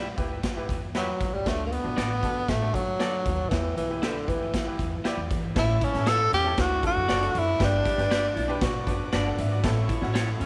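Uptempo 1960s-style soul in E minor at 117 BPM, driving and passionate and cut from a longer piece, where a breathy, up-front tenor saxophone with vibrato and subtone carries the melody until 8.6 seconds over a saturated, punchy garage drum kit in a pumping stone room, thumpy pizzicato upright bass, a slightly detuned upright piano with long sustain, and twangy, broken-up electric guitar stabs with tape echo, while at 5.6 seconds a dark hollow-body jazz guitar riff enters alongside a very quiet, reedy tonewheel organ holding sustained chords with key click and slow rotary speaker, the mix sitting in light studio reverb.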